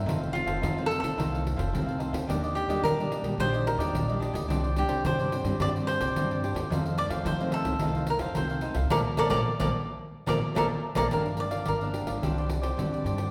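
A picked accompanying cavaquinho, a nylon-string guitar and an upright bass open this lively, bittersweet samba and choro fragment, cut from a longer piece, with a jingly, compressed pandeiro played with hard hands joining almost at once. The tempo is a straight 109 BPM in 4/4, in Bb major, and the harmony moves from F7 through Ebmaj7 and Csus2 before settling on Bbmaj7. The bright, fingerpicked classical guitar, with fresh strings, sits beneath a mellow accompanying cavaquinho. The woody, warm pizzicato bass anchors the low end. A second cavaquinho carries the melody up front with a crisp, picked tone, and the band plays an accent from 8.9 seconds before a cavaquinho solo takes over at 11.1 seconds over Gm7 and Csus2. The whole ensemble rings in the wet reverb of a recital hall, giving the sound a spacious, church-like glow.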